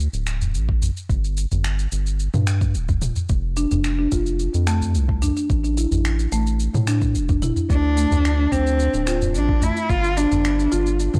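An expressive bowed cello with vibrato, portamento and analog delay comes in up front at 7.7 s in this hypnotic organic downtempo excerpt in D minor at 109 BPM, joining a deep, round analog bass with a fast-attack filter pluck, a soft electronic kick, a tape-warm electronic kit of finger snaps, shaker and toms, a small, dry udu in the background, and mellow, woody marimba arpeggios with analog delay from 3.6 s, set in a dry, gritty hardware-recorded room.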